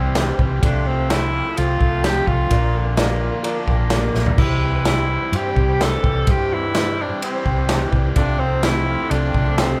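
Jangly and warm, this short cut of folk rock with a heartland rock drive moves at 127 BPM in a straight 4/4, in C major, with the band sounding live in one room under light reverb. A bright, forceful tenor saxophone carries the melody up front with vibrato, while a dark, round hollow-body electric bass and a natural country drum kit with a punchy kick and medium-tuned snare sit just as close. Behind them, a raw garage guitar plays an overdriven, double-tracked riff, and a picked twelve-string acoustic guitar adds a very quiet, shimmering, octave-doubled accompaniment. A soft, flute-like tonewheel organ holds sustained chords through a slow rotary speaker, and a worn concert grand piano with short sustain plays very quietly, adding a fill from 3.0 to 4.4 seconds as the drums add their own fill at 4.2 seconds. The harmony moves from C to F over C, then to Bb, back to C and then to F over C again.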